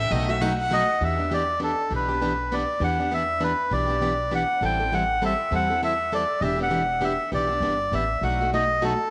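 A brisk 3/4 swing at 200 BPM, with eighth notes swung at 60%, drives this jazz manouche passage in E minor. Its mood is swinging and virtuosic, and it is cut from a longer piece. A single bowed violin opens with a brief solo, singing with vibrato, soft attacks and expressive portamento and a smooth top. From 0.7 s the melodica carries the melody up front, its tone reedy, breathy and nasal, with a smooth plastic-case color. Beneath it, a picked, plugged-in parlour steel-string acoustic guitar sits forward with a warm accompaniment, while the pizzicato upright bass on gut strings gives a woody, thumpy, dark foundation. The harmony moves from B7 to Em7 and Am7, then back through Em7 to B7, and a moderate plate reverb lends the ensemble a spacious glow.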